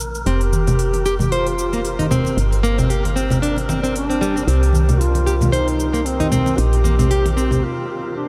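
Organic downtempo in C minor at 114 BPM with a light 16th-note swing, this meditative, earthy excerpt sets a dark, vibrato-laden duduk with scooped notes over up-front fingerpicked nylon-string guitar arpeggios, both carrying delay, while a woody, round FM bass with tube saturation, bright compressed congas, crisp electronic cabasa and hi-hat, and a breathy wind-like noise layer in the background sit beneath a dreamy mix soaked in huge ambient reverb, moving through Fsus4, Gm, Cm7 and Bb5 before everything but the duduk drops away at 7.6 seconds.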